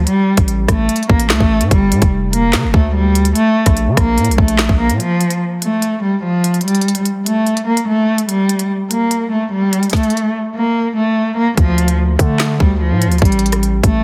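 A dark, bowed cello opens this tense, ominous drill excerpt at 146 BPM in D minor, its single close-miked player leaning into vibrato and portamento as the melody hovers between F3 and Bb3 behind a low-pass filter. A distorted 808-style bass arrives with it, heavy and aggressive, its sine body carrying a noise layer, a fast attack and a decaying tail, while the electronic drum kit enters at 0.1 seconds in a half-time feel with a hard-clipped kick, a woody snare, crisp hats, rim clicks and handclaps. The bass drops away at 5.0 seconds, leaving cello and drums to carry a chordless passage, then returns at 11.6 seconds as the harmony settles on Dm before moving to A7. Cello, bass and drums all sit up front in a lightly reverberant space, and the whole mix is squeezed into a heavily compressed, radio-style sound.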